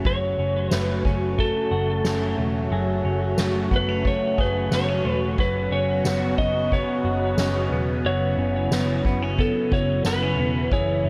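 Haunting and hazy, this dream pop excerpt drifts at 90 BPM in F# minor, moving from an F#madd9 chord to Bsus2 at 5.4 seconds. A swirling, detuned sawtooth pad with phaser and chorus holds sustained chords beneath clean, compressed electric guitar arpeggios touched with subtle chorus and digital delay, while a round, foam-muted vintage picked bass and a soft-mallet drum kit with boomy kick, fat snare, dark cymbals and tambourine anchor the low end. From 0.1 seconds a slightly broken-up electric slide guitar carries the melody through digital delay, all set in light reverb and small room ambience.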